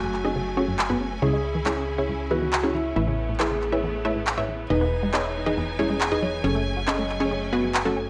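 A detuned unison pluck melody with dub echo opens this bittersweet, euphoric uplifting trance excerpt over a felt-muted upright piano second line with audible action noise, lush bowed studio strings holding chords, tight detuned sequenced synth arpeggios tinted by chorus and cassette tape, and a punchy, funky analog bass, while overdriven electronic handclaps sit up front from 0.1 seconds and filter sweeps run across the pluck, arpeggios and strings through the F#madd9, C#m, Aadd9 and Emaj7 progression in a moderate digital room.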